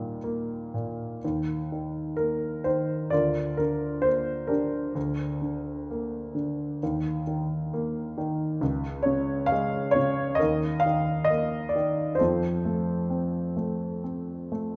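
A dark, mellow grand piano opens this tender, peaceful fragment of lyrical solo classical music, played with rubato and uneven beats around 66 BPM in 4/4, in Eb lydian. Sitting up front and intimate, the piano spans Db2 to F5, its short sustain and audible action noise held in a wet recital-hall reverb of 1.4 seconds. Its harmonies move through Eb, Bb/D, Gm/D and Db5 before reaching F at 12.2 seconds.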